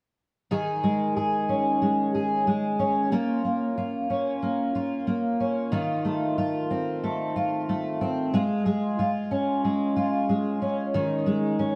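A dark, warm production wraps this short dream pop passage in a wet studio reverb, lending it an ethereal, blissful glow. A lone fingerpicked twelve-string acoustic guitar plays from 0.5 to 11.8 seconds, sitting up front in the mix with the shimmering, octave-doubled ring of a dreadnought strung with fresh strings. A subtle chorus and digital delay thicken its tone, and a finger squeak adds a close, human touch. At a relaxed 92 BPM in a straight 4/4, the guitar moves through Dbsus2, Bbm, F7 and Db/Ab in Db major before returning to Dbsus2. Cut from a longer piece, the passage feels suspended and dreamy.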